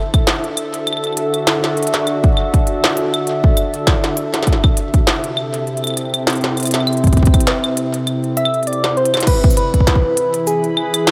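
Lightly reverberant digital ambience frames this intricate, glitchy IDM excerpt in A melodic minor at 100 BPM with a subtle 16th-note swing, where a warbling, nostalgic lo-fi pad of detuned sawtooth and triangle tones holds slow-blooming chords with chorus and its own reverb, an up-front heavy electronic kick and an industrial kit of clanging snare, crisp hats, cabasa, claves and crash sit in a large room with tape colouring, and after a break at 8.1 seconds closing on a drum fill, a round, gentle, keys-like FM lead with chorus and tape echo enters at 8.4 seconds, ahead of the harmony's move to E at 9.3 seconds.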